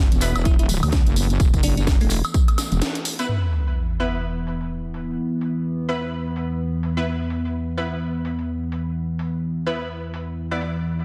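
Bass house at 127 BPM in 4/4 with a swung 16th feel, this cut from a longer piece struts with a swaggering, bouncy mood over an E5 chord. A heavy, detuned sawtooth wobble bass sits up front with chorus and sidechain pumping, its filter sweeping until it stops at 2.8 s, when a band accent lands and a short break follows. A punchy, overdriven electronic kick drives the opening alongside a jingly acoustic tambourine in the background, while a sparkling, bell-like FM electric piano carries a brief melody with chorus, phaser and dub echo. Throughout, a house drum kit with a cracking snare, hi-hat, crash and woodblock plays through overdrive and low-pass filtering, and a bold, bright orchestra-hit-like stab punches in with built-in reverb, dub echo and pumping. An evolving, wave-folded pad holds sustained chords with chorus and phaser, and at 3.3 s a sub drop delivers an impact as the second section begins. 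The dense, heavily limited master carries a light reverb.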